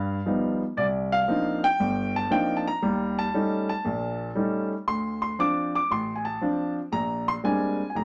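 A solo concert grand piano opens this short swinging jazz passage, heard from 0.0 to 8.0 seconds as a cut from a longer piece. The mood is relaxed, with a 4/4 pulse at 117 BPM and a swing feel on the eighth notes. The piano sounds warm and natural, sitting up front with a deep bass, and its range stretches from F1 up to D6. The harmony moves from G7b13 to Cm11, then through Eb7#11 and Dm7 before landing on Bb13 near 6.9 seconds. A moderate studio ambience gives the instrument a touch of room around it.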